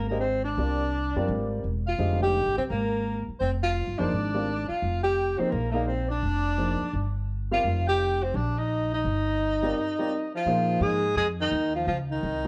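A breathy tenor saxophone carries the melody from the opening, subtoned and whispered with vibrato and scooped notes in a plate reverb, while a distant, roomy alto saxophone traces a lighter second line and a woody, thumpy pizzicato upright bass sits up front. A dark, mellow concert grand piano joins at 0.1 s with accompaniment over Fm69 and Eb/F harmony in this cool, hypnotic modal jazz fragment, swung in 4/4 at 170 BPM. After a break at 9.8 s, the music moves to a new section on Bbm11 at 10.5 s, all set in a moderate studio room.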